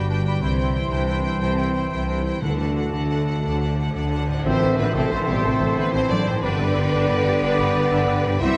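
From the first beat, a lush, expressive violin section carries the melody of this soaring, heroic film-score cue in G major at 121 BPM in 12/8. Beneath it sit a bowed cello section, an up-front double bass section, a background viola section, sustained chords from a dark, distant French horn section and a tight trombone section, ringing harp arpeggios and trumpet stabs. Quieter second lines come from a softer violin group, a clear clarinet and a pure, metallic flute, joined at 4.5 seconds by a mellow cor anglais, while a dark cymbal swell and tam-tam sound from 0.4 seconds, timpani strike with hard mallets at 2.4 seconds, and the band accents the new passage at 4.4 seconds in a reverberant concert hall.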